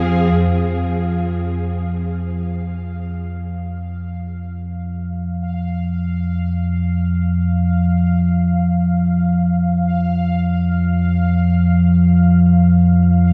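A deep, rumbling drone of triangle and sawtooth tones sits up front with phaser and its own reverb, holding between F2 and F3 through this ominous dark ambient excerpt, while a resonant, bubbling sawtooth texture with random filter steps and chorus fades in high above from 0.3 seconds, all of it steeped in a huge, wet reverb with an 8.1-second tail and a shadowy, warm production.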